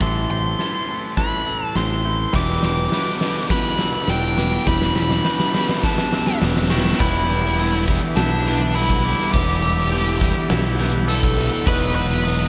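A nasal lead guitar with a parked wah sits up front, its overdriven melody carried on analog delay through this cathartic, melancholic post-rock excerpt cut from a longer piece. Beneath it, a huge arena drum kit with a fat snare, punchy kick and bright cymbals drives a build-up with a drum fill over the first 7 seconds, while a punchy, direct electric bass holds the low end close to the front. In the background, a thick fuzz guitar grinds out a distorted riff, joined at 2.3 seconds by a crunchy overdriven guitar playing its own riff as the harmony moves from Amadd9 to Em7. A sparkling, bell-like glockenspiel struck with brass mallets adds delayed arpeggios high above, and a very quiet twangy clean guitar plays fingered arpeggios until 11.7 seconds, when the chord shifts to B/E. A faint pedal steel guitar, compressed and played with fingerpicks and slide, sustains chords with volume swells, all set in light reverb and small room ambience.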